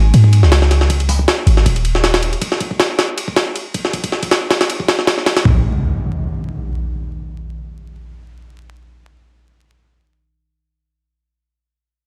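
Drum and bass in a jungle style at 158 BPM, this atmospheric, nostalgic excerpt opens with a deep, boomy 808-style bass, a sine tone with a noise layer, fast attack and mellow decay, carrying a filter sweep until it stops at 2.3 seconds. A gritty, compressed, pitched-up sampler-style jungle kit sits up front with a thumpy kick, high-tuned snare, hi-hat, ride and toms, sounding tape-warm and re-recorded in a large room, before an electronic impact takes over at 5.5 seconds. Vinyl crackle colours the dry, nearly reverb-free sound.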